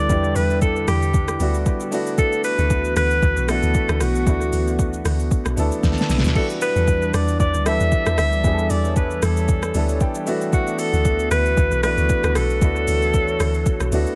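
A late-night, hypnotic amapiano groove at 115 BPM in 4/4, with a gentle swing on the sixteenths, cut from a longer piece. A clear alto saxophone carries the melody up front, its vibrato and scooped notes trailing dub echo, while a baby grand piano with long sustain supplies accompaniment through the same echo and adds fills around 9.7 seconds and at 13.9 seconds. Beneath them a hollow, flute-like pad holds dark sustained chords in the background, shimmering with chorus, and a deep log drum bass gives round, percussive, decaying notes in the low register. The smooth R&B drum kit enters at 0.1 seconds with a soft kick, fat snare, metallic hi-hats, rim click, shaker and crash cymbal, overdriven and up front, with a drum fill near 5.8 seconds. The harmony moves between Em7 and D69, and the echo-heavy mix sits in light digital ambience.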